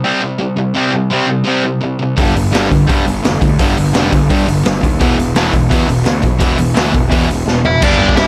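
This urgent, aggressive punk rock excerpt opens with a crunchy overdriven guitar and a sludgy distorted guitar playing a picked riff, joined at 2.2 seconds by a growly fuzz bass sitting in the background and a raw, saturated garage drum kit up front with a boomy kick and dark cymbals in a small pumping room; then, as a drum fill rolls through, a dark, smooth lead guitar cuts in at 7.7 seconds, followed at 7.8 seconds by a very quiet, double-tracked electric guitar riff, all under light reverb.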